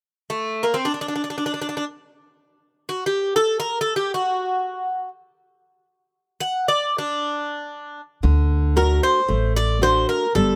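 A bright, metallic Greek bouzouki opens this brooding, cool slice of Greek folk at 0.3 s, its picked double strings with some octave-doubled courses carrying the melody alone in free time and sitting close and up front. At 8.2 s the band arrives on a D chord, as a fingerpicked classical nylon-string guitar adds bright accompaniment and a woody, thumpy upright bass plays dark pizzicato lines beneath. The dry, detailed recording keeps every string sound intimate until the cut at 10.6 s.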